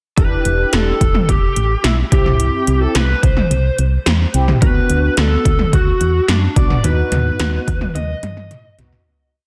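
A drum-machine beat with syncopated toms, a punchy kick, metallic hats and gated reverb on the snare and toms drives this short, nocturnal synth-pop verse, as a round, dark FM bass pulses in eighth notes, mellow detuned synth brass with chorus pushes close-voiced chords, and an overdriven, lo-fi lead guitar with digital delay plays hook phrases over a dense, heavily limited master, until the fade-out begins at 6.8 seconds and a drum fill enters at 8.0 seconds.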